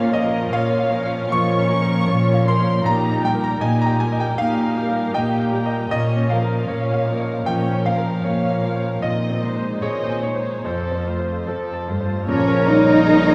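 A bright, brilliant concert grand piano sits up front, its deep bass anchoring this sorrowful, moving cinematic passage, cut from a longer piece, that unfolds in a flexible, rubato 4/4. Around it, muted violin sections carry the melody and a lush second line with a veiled, con sordino tone and vibrato, while a muted viola section adds background accompaniment and a muted cello section holds the bass up front with a smooth top. A ringing, fingerpicked concert harp plays arpeggios in the background. The harmony moves from Bbm through Eb/Bb and Ab/Bb to F before returning to Bbm at 12.3 seconds. At that point a clear solo oboe, a very quiet, roomy clarinet, a hollow, mellow flute section, distant French horns holding sustained chords and a muted double bass section all enter for the final second. A recital hall reverb lends the whole a spacious, wet atmosphere.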